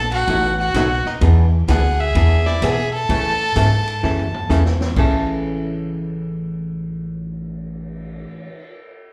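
A pair of fiddles leads this down-home, playful western swing excerpt in A major at 128 BPM, one rich and nasal carrying the melody while a clear, biting fiddle with light vibrato plays a second line beneath it, both bowed with plate reverb and slapback echo until they stop at 4.5 s. A woody, thumpy upright bass sits up front on gut strings, while a dark, clean archtop guitar picks the accompaniment with the same plate reverb and slapback, and a swinging big-band drum kit with a punchy kick plays a fill from 4.0 to 5.0 s. The chords move from B7 to E7 to A, and the whole band comes across like a live club gig heard through the venue's sound system.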